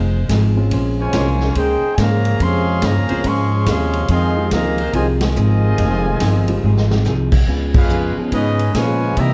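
A dark, warm production with light reverb frames this short cut from a longer big band swing piece in F minor, moving at 142 BPM in 4/4 with a sultry, brassy mood. A tight trumpet section carries the melody with vibrato and a smooth top, while a clear trombone section plays a second line beneath it. Up front, the woody, pizzicato upright bass anchors the low end, and the swinging drum kit enters at 0.3 seconds, sounding distant and roomy with dark cymbals and a boomy kick. In the background, a picked, clean hollow-body electric guitar and a natural-sounding baby grand piano supply accompaniment, while a present but very quiet edgy saxophone section holds sustained chords with light vibrato. The harmony moves from Fm7 to Bbm9 and back, then lands on Db7, with band accents at 5.1 and 7.7 seconds and a short drum fill at 6.6 seconds.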